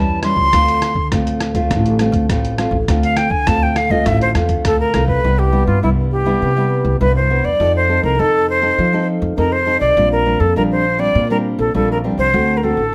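A straight 4/4 groove at 102 BPM drives this nostalgic, bittersweet samba and choro fragment in D minor, with a muffled, pitched-down trip hop sampler-style drum kit of thumpy kick, hi-hat and rim click playing from 0.2 to 5.2 seconds. Up front, a breathy silver concert flute with a crisp attack, rolled-off highs and an unsteady straight tone takes a solo over that opening and carries the melody through plate reverb to the end. Beneath it, a fingerpicked nylon-string guitar with fresh strings and audible finger squeak and a woody, growly pizzicato upright bass move through A7, Dm7, Cmaj7, F7, Bb69 and D7 in a moderate studio room.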